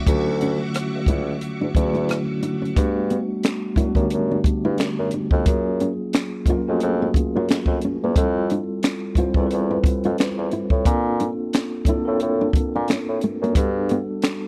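A mellow tine electric piano and a lush, chorused string machine open this smooth neo-soul R&B excerpt, the strings dropping out at 2.7 s while a vintage-toned bassoon with light vibrato carries the bass line, a compact cocktail drum kit with punchy kick, high-tuned snare, rim click, hi-hat and finger snaps sits up front, and a thumb-plucked nylon-string guitar adds a second line over swung sixteenths and maj9 chords in a close, dry 1970s-style studio sound.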